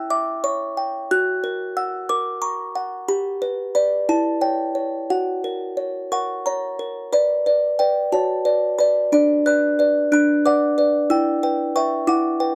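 A steady 6/8 pulse carries this fragile, wistful classical lullaby, cut from a longer piece and played by a solo music box from start to finish. The large box sounds delicate and tinkling, its bright plucked tones slightly out of tune and set up front in a dry, close 1970s-style studio recording touched with light reverb. Diminished and major harmonies give way at 7.1 seconds to a second section that settles into minor chords, ranging from the middle register up to high, glinting notes.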